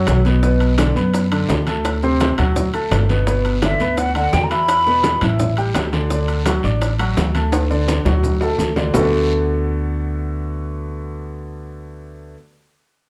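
A straight, danceable 4/4 groove of background congas and round, low-tuned bongos, ringing metal-shell timbales, a raspy guiro and grainy maracas drives this sophisticated Afro-Cuban jazz excerpt, closing with a drum fill before the percussion stops at 9.0 seconds. Up front, a woody pizzicato upright bass and an intimate grand piano with audible action noise and long sustain carry the harmony in a dark club-reverb space through to the end. A breathy, hollow jazz flute with a soft attack and straight tone states a brief melody around 3.6 seconds.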